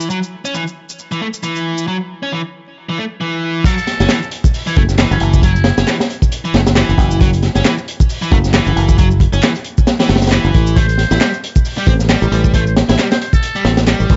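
A crunchy, saturated breakbeat kit with a punchy kick and high-tuned snare crashes in at 3.6 seconds over a biting overdriven guitar riff with dub echo and a tape-warm electronic shaker and handclaps, joined by a growly fingered electric bass and a buzzy, raspy muted trumpet with AM-radio sampler grit that appears briefly and returns at 10.8 seconds, giving this raw, funky breakbeat cut a dry, dusky sound under a layer of vinyl crackle.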